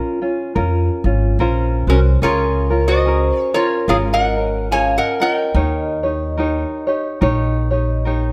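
A lap resonator guitar carries the melody up front, its slide and fingerpicks giving a metallic, nasal voice that reaches from Db4 up to Bb5. This sunny, relaxed Hawaiian excerpt moves at an easy 72 BPM in 4/4 with a gentle swing on the eighth notes, set in Db major and tuned to A4 = 438 Hz. A tenor ukulele sits up front with light, thumb-plucked accompaniment, while a vibraphone played with medium mallets adds a ringing second line in the background, colored by a slow motor vibrato. At 0.6 seconds an upright bass joins with woody, dark, thumpy pizzicato from its gut strings. The harmony opens on Bbmadd9, settles onto Db6 at 2.2 seconds and turns to Eb7 at 5.6 seconds, all within a light reverb.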